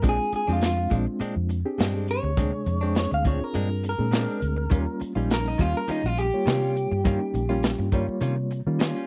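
Swaggering and gritty, this straight-eighth soul blues excerpt moves at 103 BPM in 4/4, shifting from Bb9 to Eb9 at 4.7 seconds. Up front, a slightly broken-up, lo-fi electric guitar through a small old amp carries the melody until 7.9 seconds, while a crunchy, saturated breakbeat kit with a tight kick and a rolled-off top drives alongside a dark, round, foam-muted fingered bass. A reedy, worn, slightly out-of-tune electric piano with fast tremolo fills in the accompaniment, and a bright, clean, direct-recorded guitar adds picked stabs, all captured in a dry, close 1970s-style studio sound.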